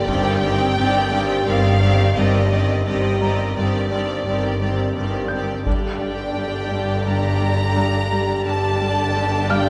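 Rich, lush violins carry the melody of this mysterious, ominous suspense cue, their focused, vibrato-laden bowing sitting high above a second violin line and a smooth, distant viola accompaniment. Moving at 86 BPM in a straight 4/4, the music rests on a Cm add9 over G before settling onto G minor at 5.7 seconds. A fingerpicked Celtic harp repeats a ringing riff in its low register, while a felt-muted upright piano adds a soft, intimate texture in the background, its thin felt and audible action noise lending a hushed, mechanical intimacy. Bowed double basses with a clear tone and a smooth cello section hold a low G beneath everything from 0.1 seconds. A close, dry taiko ensemble struck with heavy sticks punctuates the cue twice, at 0.1 and again at 5.7 seconds, and a wet scoring stage reverb gives the orchestra a spacious, cinematic bloom in this short cut from a longer piece.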